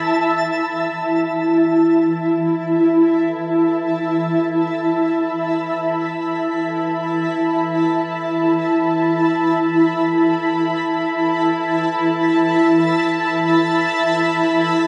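A blurred, evolving granular cloud pad sits up front, holding a sustained Esus4 chord between E4 and B5 for the full 14.9 seconds of this luminous, weightless ambient fragment in free time. For only the opening 0.7 seconds, a faint twinkling granular texture adds a sparkling octave-up shimmer on A5 before dropping out. Both parts are bathed in shimmer reverb within a huge, wet space, and the overall production leans dark.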